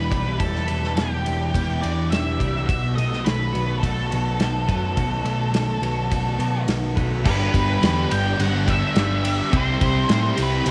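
Melancholic, dreamy shoegaze and dream pop rock cut from a longer piece at 105 BPM, where a fuzzy octave-fuzz lead guitar carries the melody through analog delay and cassette tape over a bright, twangy twelve-string electric guitar's chorused, compressed arpeggios, two dark overdriven semi-hollow guitars riffing in the background (one bathed in lush chorus, the other in reverse reverb), a round, up-front hollow-body short-scale bass, and a loose indie drum kit with tight kick, medium-tuned snare, crash and ride pumping in a small room, all moving from Em7 and B7 to G6 and C as a very quiet, double-tracked distorted electric guitar joins at 7.2 seconds, with the whole home cassette recording carrying a small room ambience.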